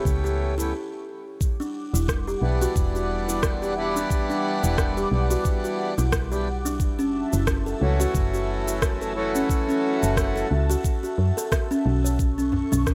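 A buzzing kalimba plays arpeggios from the very start, its thumbnail-plucked notes short and dark, given echoes by delay and carried through a filter sweep over the opening 1.4 seconds, with a brief stop falling between 0.7 and 1.4 seconds. Around it sit a reedy, breathing harmonium and an airy, breathy pad with a slow attack, chorus and phaser, both pulsing with sidechain pumping. This is an earthy piece of organic downtempo in E dorian at 89 BPM, with a 16th-note swing. A soft, round FM bass with a woody tone sits up front alongside a knocking electronic kick, while an electronic shaker and rim click fill in the groove, and a deep, dry djembe is heard only faintly near the start and end. After the harmony moves from Em9 to F#m7, the harmonium drops out at 10.5 seconds, and the pad, kalimba and rhythm parts close on B7sus2 in this short excerpt under a light reverb.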